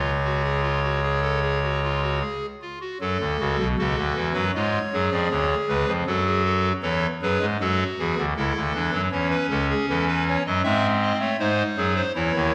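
A wet recital-hall reverb surrounds a hollow, up-front pipe organ playing a clarinet reed solo stop with baroque voicing and a touch of chiff, spanning B1 to E5. This joyful, lively baroque-style three-part fugue in F# minor moves at 79 BPM in a straight 4/4, tuned to A4 = 443 Hz. Cut from a longer piece, the short opening on C# gives way at 3.0 seconds to a second section that moves through F#m, C#7, C#m and G#7.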